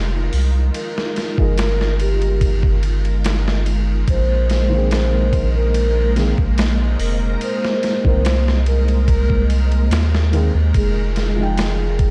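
Smoky and hypnotic, this trip hop excerpt sits on a round, deep analog bass and vintage string-machine cellos holding soft sustained chords through ensemble chorus, with a reversed, swelling texture glimmering far in the background. A gritty boom bap sampler-style kit with a thumpy kick and high-tuned snare enters at 0.3 seconds, followed by a pure, breathy sine lead with lush chorus, vibrato and tape echo at 0.8 seconds. A felt-muted upright piano with audible action noise, harmonic tremolo and tape echo joins at 1.4 seconds, all drifting between Fm9 and Bb9sus4 in a dark, digital ambience.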